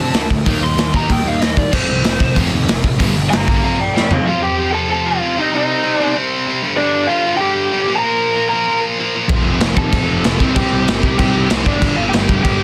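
Punk rock at 190 BPM in straight 4/4, this raw, urgent clip is cut from a longer piece, tuned slightly flat of standard pitch. A lo-fi lead guitar through a small cranked amp sits up front and plays a solo from the start over chords moving through Eb, F and Gm, with a bright, distorted electric guitar riffing beside it throughout. Beneath them, a very quiet crunchy guitar, a double-tracked semi-hollow guitar in the background and a growly fuzz bass fill out the riff, while a gritty garage drum kit with a punchy kick, dark cymbals and a pumping small-room sound drives the band. A drum fill at 3.9 seconds leads into a sparser passage at 4.3 seconds, where only the lead and the distorted guitar carry on over Cm, G5 and Bb5. The full band crashes back in at 9.3 seconds, with the whole track given light reverb and a dense, heavily limited master.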